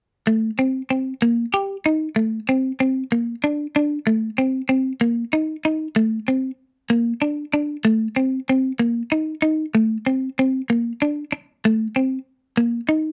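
A dry, close recording with a 1970s studio character and a touch of light reverb frames this short highlife excerpt, cut from a longer piece. A lone electric guitar carries everything from 0.3 seconds to 13.1 seconds, its picked tone bright and twangy with a scooped midrange and just a hint of break-up at the edge. It sits up front, moving between A3 and G4 over a joyful, danceable 12/8 feel at 127 BPM, counted in dotted quarters with a straight pulse. The passage falls into two sections, with a shift at 7.9 seconds into a second idea that runs to the close. The tuning sits slightly sharp, with A4 at 441 Hz.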